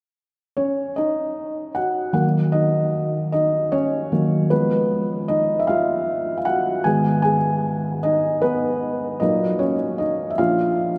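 Bathed in a long cathedral reverb, this dramatic, aching pop fragment in Eb minor moves slowly at 51 BPM in 6/8, with a felt-muted upright piano entering at 0.6 s and playing alone from 2.1 s, its dark, intimate, thick-felt tone sitting up front as the harmony passes from Ebm through Fdim and Abm to a final Bb.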